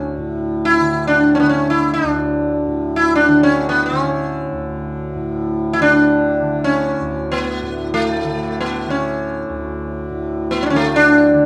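A rough home-demo sound with a small-room reverb surrounds this devotional, radiant passage of Hindustani classical music, cut from a longer piece, in free time on raga yaman in D. Up front, a round, plectrum-plucked sitar carries the melody with a buzzing edge and shimmering sympathetic strings. Beneath it, a softly plucked tanpura holds a low, warm drone in D throughout the 11.5 seconds.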